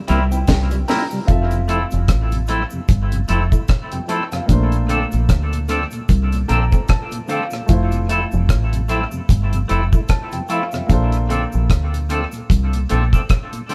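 A round, dark, foam-muted fingered bass sits up front beside a dry reggae kit with a high-tuned snare and tight kick in this romantic, smooth lovers rock excerpt at 75 BPM in F major, where a natural-sounding baby grand piano with short sustain adds fills at 0.0 and 6.1 seconds, a fat, lightly overdriven tonewheel organ with chorus vibrato and tape echo fills out the accompaniment, a clean, twangy picked electric guitar with tape echo plays stabs over the swung feel, and a cabasa with tape echo sits quietly in the background, all under light room reverb.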